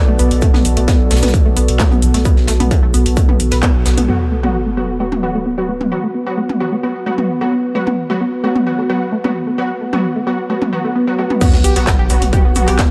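A distorted, up-front electronic kick drives this hypnotic peak-time techno excerpt alongside a metallic-hatted techno kit with claps, toms and crash, a brushed jazz kit in a small airy room, and a round, overdriven sub bass, with the bass and the brushed kit's hats and percussion pumping under sidechain. A tight, detuned sawtooth riff with delay sits in the background over a warbling, nostalgic lo-fi pad and a very quiet evolving analog drone that drops out at 4.1 seconds, while a filter sweep rides the synth line. At 4.1 seconds an aggressive, thick unison rave stab arrives up front with a sub drop impact, and a second drop at 11.4 seconds brings the kick and bass back in.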